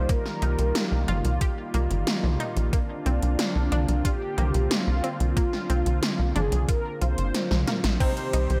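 A straight 4/4 pulse at 91 BPM drives this nocturnal synthwave excerpt, anchored by a thumpy, sampler-style electronic kick and 80s electronic pad drums whose gated snare and toms, metallic hats, crash cymbal and overdriven grit sit up front. Beneath them, a tight, nasal sequencer bass of sawtooth and square waves pumps with the sidechain, while a smooth, detuned analog pad holds sustained chords in a lush chorus over Ebadd9/C and Bbadd9/C. A dark, round synth brass with vibrato carries the melody through chorus and digital delay, and a bright unison pluck in the background plays arpeggios through tape echo. A drum fill from 7.3 to 8.0 seconds leads into a Cm chord, where a clear, worn grand piano enters with stabs. Light reverb and digital ambience frame the driving mood.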